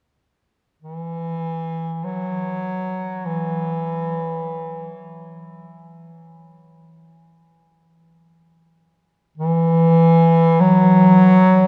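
A lone bass clarinet emerges at 0.8 seconds, fading in slowly as it carries a dark, unsettling melody through free, unmeasured time. This short ambient fragment, cut from a longer piece, stays in the instrument's low register between E3 and F#3, played in a classical style with a smooth top to its tone. The clarinet sits up front, its lines trailed by a delay and suspended in a cathedral reverb that lingers for 5.8 seconds. A worn, warbling old-tape character gives the sound a cassette-like quality, with a pitch drift that adds to the uneasy atmosphere. The solo voice continues until 11.7 seconds, where the fragment ends.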